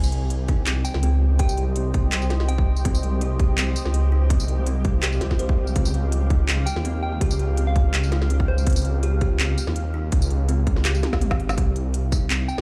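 A hard-clipped, overdriven electronic kick sits up front from 0.5 s in this dark, spacious half-time drum and bass excerpt at 165 BPM in C phrygian, partnered by a rumbling, detuned saw bass and an organic electronic kit of woody snare, smooth hats, handclaps, tambourine and toms that rolls into a drum fill at 11.0 s. Behind them, a moody ambient pad pumps with sidechain and holds chords moving between Cm and Db, while a hollow, thumbnail-plucked kalimba arpeggiates through tape echo and a flickering granular texture shimmers in reverb. A pure FM synth bell drifts in at 0.8 s with phaser and 12-bit grit, and the mix sounds as if played through a big sound system in a bare room with large studio reverb.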